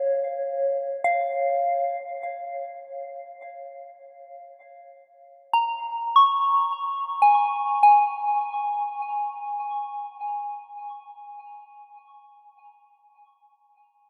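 Ambient in free time and D-flat major, this short excerpt is serene and warm, tuned slightly low at A4 = 438 Hz. A lone soft FM synth bell sits up front, playing between Db5 and Db6 with pure, mellow tones that strike quickly and then decay, shaded by chorus, phaser and delay. A huge, wet reverb with an eight-second tail surrounds it, and the harmony rests on a Db chord before thinning to a Db5 power chord as a new passage begins at 7.8 seconds.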